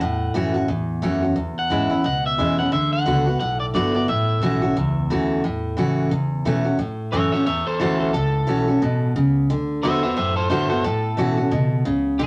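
A slightly broken-up electric guitar carries the melody up front in this upbeat, rowdy, swung rockabilly passage cut from a longer piece, turning to a clean solo at 6.8 seconds, over a bright, full-bodied picked dreadnought acoustic guitar with fresh strings and audible finger squeak and a dark, woody, thumpy pizzicato upright bass on gut strings, with moderate studio reverb.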